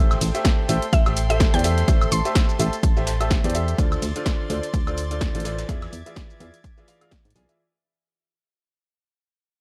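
Swung sixteenths drive this soulful, energetic piano house clip in 4/4, cut from a longer piece and landing on a drop that carries its full 7.6 seconds, with a fade-out beginning at 2.5 seconds. An overdriven electronic kick sits up front alongside a punchy analog drum machine playing hi-hat, shaker, snare and woodblock through its own overdrive, while a very quiet, gritty sampler-style soul kit adds compressed hi-hat and snare with the air of a large room. A solid FM bass, round, mellow and fast in attack, anchors the low end, and a bright, woody upright piano plays the riff through analog delay. Behind them, a dark studio string section holds soft, floating bowed chords that pass through Am7, Dm7 and E7b9; the strings, piano and bass all pump with sidechain compression. A full-bodied, mallet-like FM synth pluck with chorus adds a brief melody early on, and the whole mix has a dry, gritty hardware character with light reverb.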